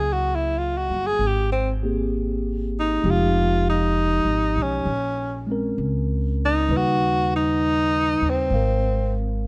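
A breathy, up-front tenor saxophone carries a tender, late-night jazz ballad solo in Ab major at 65 BPM with a lilting swing, its subtone, vibrato and scooped notes sitting close and dry over a clean, mellow tine electric piano and a woody, thumpy pizzicato upright bass, moving through lush chords from Gb9 to a closing Ab69 before the saxophone drops out at 9.2 seconds in this fragment of a longer piece.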